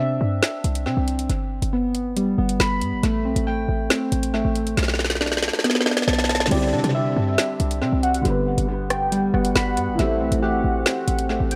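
Dark and cold, this half-time drill hip hop excerpt at 138 BPM opens with soft, round electric-piano-like synth keys arpeggiating over a punchy, tight 808-style bass, with a drill kit of woody snare, metallic hi-hats, rim clicks and crash entering at 0.4 seconds and playing a fill from 4.8 to 6.5 seconds. From there a velvety synth lead carries a second line with chorus and tremolo, while a boxy, deep-bassed concert grand piano adds accompaniment. Tape echo and digital ambience soak the mix in an echo-heavy space across a Cadd9, G, Am7 and Bm7 progression.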